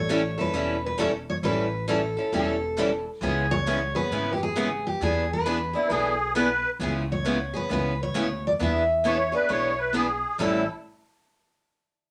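A reedy, shimmering musette accordion joins at 5.7 s with a second line over this playful, lively excerpt of swung acoustic string jazz manouche, where a full-bodied jumbo steel-string guitar picks the up-front melody, two bright, fresh-stringed guitars with audible finger squeak pick out the accompaniment, and a woody, thumpy pizzicato gut-string upright bass anchors the low end, all in a wet studio reverb.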